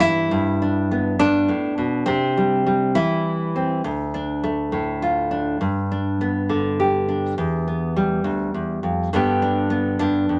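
Moderate studio reverb surrounds an up-front, full-bodied nylon-string guitar in this reflective, intimate folk fragment cut from a longer piece, fingerpicked alone at 68 BPM in 6/8 through chords of G, C, Dm, G, Em and back to G, with a deep classical tone and finger squeak catching the ear.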